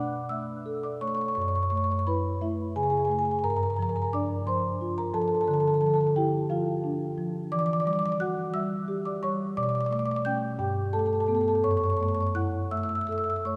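A solo marimba played with soft mallets opens this contemporary classical excerpt, its rosewood bars giving a woody, round, mellow tone that sits up front even as the whole performance is heard from further back in a cathedral with a long, wet reverb. The piece moves in a flowing, reflective 6/8 at 58 BPM with a rubato feel, ranging from F#2 to G6 across rich minor-seventh and added-ninth chords such as Bm7, F#m9, Gm7 and Dmadd9. The music lasts 13.6 seconds, closing on F#m7 as it is cut from a longer piece.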